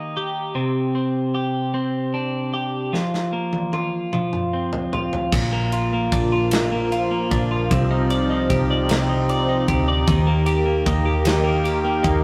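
A tender, swaying six-eight pop ballad in Bb major at 51 BPM, this rough rehearsal-room excerpt opens on an up-front, clean, compressed twelve-string electric guitar picking chords through spring reverb, before an acoustic studio drum kit with a punchy kick enters on a fill at 2.9 seconds, a dark, round, foam-muted fingered bass joins at 5.3 seconds, and a bright, detuned, slow-attack sawtooth pad with chorus and a filter swell holds sustained chords from 6.0 seconds over the move from Bb to Cmadd9 and Eb.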